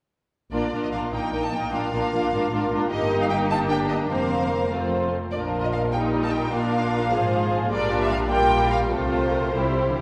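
In a 6/8 with a flexible rubato, this spirited, cheerful classical-period movement for symphony orchestra opens at 0.5 seconds, with a focused, up-front violin section carrying the melody above a smooth, lush second violin line. Expressive violas fill in the accompaniment, while a soft-attacked cello section with portamento and an even, rich double bass section anchor the bass. All five sections play with vibrato, and the whole passage sits in a wet church reverb that gives this short cut from a longer piece a resonant, hall-like glow.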